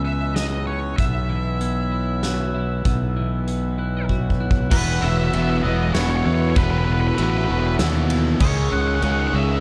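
A straight 3/4 pulse at 97 BPM carries this soaring, hopeful post-rock fragment in E major, cut from a longer piece. From the start, a growly fuzz-driven bass sits up front, while a dark octave-fuzz lead guitar with analog delay sings the melody. Underneath, a very quiet, compressed twelve-string electric guitar picks clean arpeggios, a reedy, breathing pedal harmonium holds smooth sustained chords, and a bell-like glockenspiel with soft plastic mallets rings mellow delayed arpeggios high in the background. A huge arena drum kit with a boomy kick and natural big-room sound comes in at 0.4 seconds, adding crash, ride, hi-hat and snare, and plays a fill at 4.1 seconds. At 4.7 seconds the harmony moves from C#m7 and Bsus4 to Esus2 as two background riff guitars join: a crunchy overdriven one and a bright, raw garage guitar with overdrive and phaser. The small-room ambience gives the whole a dark, warm production.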